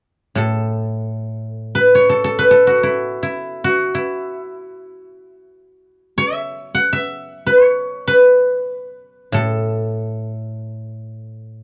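In free time, a solo guzheng unfolds a flowing, serene passage of Chinese traditional music, entering at 0.4 s and carrying on until 11.6 s. Played with fingerpicks, the acoustic instrument sounds silvery and ringing, its tone warm and placed up front. Its lines span from A2 up to F#5, giving the single instrument a full reach from deep low strings to bright upper notes. Light reverb and a small room ambience surround the otherwise dry, close sound of a 1970s-style studio recording. The passage is cut from a longer piece and stays within one unbroken section.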